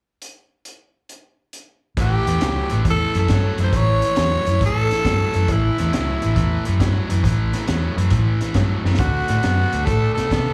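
A swung shuffle in 4/4 drives this soulful, gritty electric blues, heard as a live club gig through the venue's PA with club reverb. A crunchy breakbeat kit opens alone at 0.2 seconds, its high-tuned snare and punchy kick sounding saturated and dark with a rolled-off top. At 2.0 seconds the band arrives on an A5 chord. A round, foam-muted vintage electric bass sits prominently underneath, while an overdriven, picked guitar plays a biting low riff with slapback echo. Up front, a raspy, growling tenor saxophone takes the solo melody in jazz style, its bright tone carried by slapback and tape echo. A drum fill lands at 8.8 seconds just before the harmony moves to D7, and the recording is cut from a longer piece.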